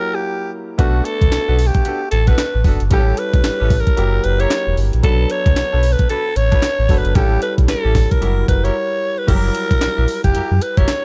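This dark, dry mix, cut from a longer piece, is confident, slick new jack swing in B minor at 113 BPM, with a 16th-note swing feel in 4/4. A raspy, bright alto saxophone carries the melody up front with vibrato and a gritty pop edge, while an intimate concert grand piano accompanies it, its action noise audible and its notes ringing with long sustain. At 0.8 seconds the band enters. A compressed, pitched-up breakbeat kit brings a thumpy kick, a medium-tuned snare, handclaps, hi-hat and crash with a tape-warm grit, and a deep sine sub bass doubled at the octave sits alongside it with a fast attack. A warm horn section adds jazz-style stabs in the background, smooth on top with light vibrato, over a loop of Bm7, A7 and F#7b9. A brief break at 8.8 seconds leads into a new section at 9.3 seconds before the clip ends.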